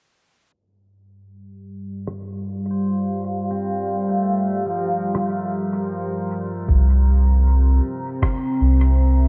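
Ambient dub at 78 BPM in G dorian with a meditative feel: a dark, detuned sawtooth pad holds Gm7 then C7 under a filter sweep, a muffled, pitched-down rim click trails dub echo, a bright, clean pedal steel guitar plays fingerpicked slide arpeggios with volume swells through a low-pass filter and diffuse delay, and from 6.7 seconds a round sub bass and a thumpy, compressed kick arrive up front inside a dreamy, reverb-soaked hall.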